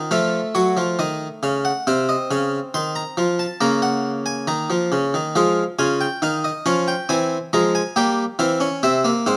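A brilliant, plucked Italian-style harpsichord with octave strings sits up front and plays alone through this serious, driving 9.4-second cut from a longer baroque-style three-part fugue in straight 4/4 at 69 BPM, tuned to A4 = 439 Hz, ranging from Ab2 to C6 over harmony that moves from F through F7/C, Bbm/Db and Fm to C/E and a closing C7, all captured by close, detailed microphones with light reverb.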